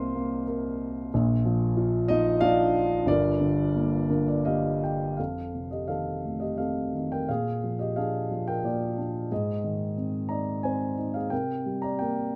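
A dark, mellow grand piano with long sustain sits up front in this cool, brooding classical fragment, a lyrical solo in 3/4 at 80-95 BPM shaped with rubato and captured by close, detailed microphones in light reverb, where a piano fill from 3.7 to 5.2 s leads into a new section whose harmony moves from F7 through Bb7 and Ab toward C7.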